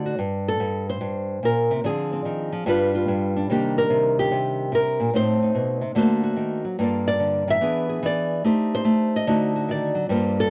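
A close, dry studio sound in a 1970s manner, touched with light reverb, frames this short cut from a longer piece of solo jazz. A lone nylon-string guitar carries everything here, its acoustic tone small and up front, fingerpicked across a range from G2 to E5. The mood is moody and smoky, set in G minor at 145 BPM in 4/4 with a swung eighth-note feel. The harmony moves through rich, shaded chords, opening on Gmadd9 and passing through Dm7b5, Cm9 and D7b13 before landing on D near 9.3 seconds. Across its 10.5 seconds, the guitar's intimate, warm voice gives the passage the feel of a late-night room.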